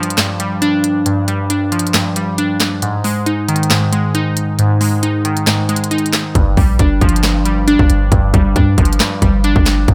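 Hip hop and trap at 136 BPM in a half-time feel, this brooding, menacing excerpt opens on glassy, warbling digital keys with a vintage sine-like tone, shaped by chorus, a low-pass filter sweep, and a bright, up-front presence as the harmony moves from G5 to Ab5. Alongside them from the start, an electronic trap kit with a hard-clipped kick, sharp snare, crisp hats and handclaps sits close in a small room. At 6.4 s a deep, boomy, clean 808-style bass drops in, dark and quickly decaying, under a dry mix.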